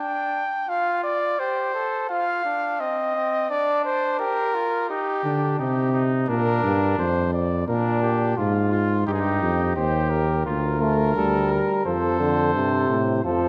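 A stately yet lively classical brass canzona in imitative style, this excerpt opens with two trumpets: a mellow lead with light vibrato carries the melody up front, while a punchy, vintage-toned second trumpet weaves a lower line beneath it. A close-miked bass trombone adds a warm foundation from 5.2 seconds, and a clear euphonium joins up front with accompaniment at 10.8 seconds. The ensemble sits in a moderate concert-hall reverb.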